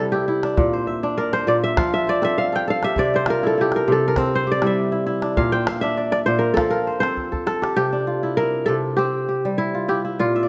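Set in a moderate recital hall with a 1.7-second reverb, this short excerpt of West African traditional string and xylophone music has a joyful, warm mood at 100 BPM in a straight 4/4, in C mixolydian and tuned to A4 = 439 Hz. Two acoustic koras sit up front with a crisp, ringing, fingerpicked tone: one carries the melody between E4 and G5, while the other spins arpeggios from Bb2 up to E5. A deep calabash, close and dry, enters at 0.4 seconds and plays a fill before stopping at 7.8 seconds, where the music moves into a new section. The harmony cycles through C, Bb and F, returning to C as that second section begins. A kora solo runs through the opening section, and a brief kora fill at 10.3 seconds closes the passage.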